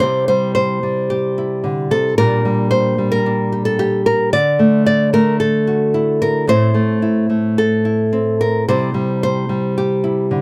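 A warm, fingerpicked nylon-string guitar sits small and up front in this brief folk excerpt, playing alone with a nostalgic, rubato feel in 4/4 through a chord path from C to Gm/Bb, Dadd9, Am and back to C, caught by close, detailed microphones with light reverb.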